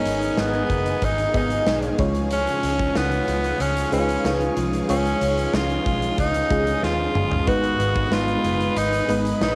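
This brief cut from a longer 1980s-style pop piece opens at once with a raspy, forceful tenor saxophone carrying the melody up front, its bright tone touched with light vibrato and grit. Beneath it, a glassy FM electric piano with a bell-like attack, colored by chorus and phaser, supplies the accompaniment, while a very quiet shimmering pad holds ethereal sustained chords high above and a clean, direct-recorded electric guitar picks out a compressed riff. A mellow, distant horn section adds tight, roomy stabs at a low level. From 0.1 seconds a dark, foam-muted fingered bass and a huge arena drum kit with a punchy kick, medium-tuned snare, hi-hat, tambourine and toms settle into a straight 93 BPM groove in 4/4, the kit carrying a cassette-tape grit and a pumping hall sound, with a drum fill at 6.8 seconds. The harmony moves from G#m to C# and back to G#m, giving the uplifting, glossy mood a home-recorded feel softened by moderate spring reverb in a small room.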